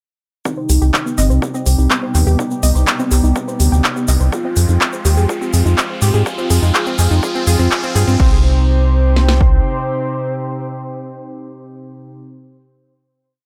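This complete piece of dark, driving melodic techno at 124 BPM in C harmonic minor begins at 0.5 s with a punchy four-on-the-floor kick and cracking snare, a grainy, compressed shaker playing hand-played sixteenths in the background, and three synths. A fat, saturated sawtooth lead with a sub octave and vibrato carries a repeating riff, a smooth, warbling vintage pad holds sustained chords, and a bright, detuned pluck runs a 12-step sequence that drifts against the bar. Moments later a deep, round analog bass arrives up front with a galloping sixteenth-note line, joined by programmed open hats, claps and crash treated with analog delay. Across the build, filter sweeps open up the pluck and the lead, and a riser enters at 2.6 s while the harmony moves from C minor to F minor. At 8.2 s the music settles back on C minor for a final chord held by the lead and pad. Sidechain pumping breathes through the lead, pad, pluck, bass, hats and cymbals, tape echo trails the lead and pluck, and light reverb and digital ambience give the mix an echo-heavy sheen.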